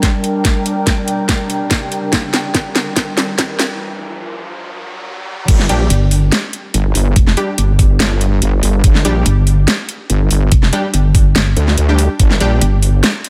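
A saturated, chorused wobble bass crashes in at 5.5 s, joined moments later by bright, punchy orchestra-hit-like stabs trailing dub echo and then a dark, pulsing pluck wobble bass, turning this menacing, chaotic half-time heavy wobble dubstep cut from a build-up (an evolving wavetable pad with phaser and sidechain pumping, a breathy airy pad, an electronic riser and a drum fill over a knocking electronic kick) into a drop driven by an up-front dubstep kit with a huge snare and metallic hats.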